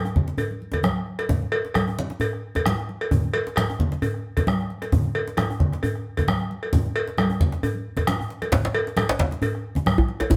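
Heard through a moderate studio reverb, this festive, driving West African drum ensemble sounds like a band playing live together in one room, in a short clip cut from a longer piece. A round, up-front bombo anchors the groove, while a deep djembe with metal rattles sits close and dry, struck with hard hands. Congas with a thick skin and medium tuning add a compressed, saturated weight, also played with hard hands. A metallic, band-limited cowbell with a vintage character rides up front across the texture in a 4/4 feel with a light swing on the sixteenths. A drum fill at 8.2 s leads into a new section at 8.5 s, where a second, medium-tuned djembe joins, close and prominent, to push the energy through to the end.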